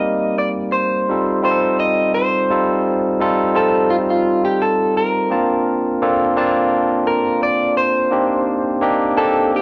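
A barky, lightly overdriven tine electric piano sits up front through a combo amp, carrying the accompaniment in this smooth, cinematic soul piece at 85 BPM in 4/4 with a gentle sixteenth-note swing. Beside it, an electric guitar through a small old amp plays the picked melody with a slightly broken-up, lo-fi tone, moving over Cm7, F9, Bbmaj7 and Cm9, with a new section arriving at 2.5 seconds. An echo chamber reverb with a digital ambience gives the short cut a spacious, polished glow.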